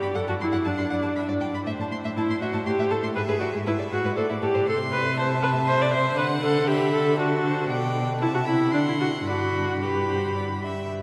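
Lively and cheerful, this quick classical-period movement for string quartet moves in G major at 118 BPM in 3/4, with a rubato feel, in a passage cut from a longer piece. A smooth, even violin carries the melody while a rich, focused second violin spans a broader range on a second line. An intense, clear viola and an expressive cello with soft attacks and portamento sit up front in the accompaniment and bass, their vibrato blooming into a wet cathedral reverb.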